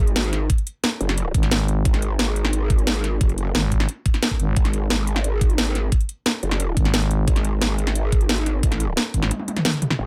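A dry, close sound puts every part up front in this tense, aggressive slice of dark technical drum and bass, cut from a longer piece and running at 177 BPM in straight 4/4. A growling, saturated bass sits low between F#1 and A1, its detuned unison sine voices wobbling through a formant filter, thickened by chorus and pumping against the sidechain from the start to 10.1 seconds. A thick FM bass growls on G#1 in two stretches, from 1.3 to 4.6 seconds and again from 6.8 to 9.3 seconds. The layered electronic kit brings a cracking snare, metallic hats and toms, while a separate knocking electronic kick sits slightly louder in the mix, both drum parts tape-tinged and re-recorded in a small room. A drum fill closes the passage from 9.3 seconds, and a barely audible electronic impact lands at the very end.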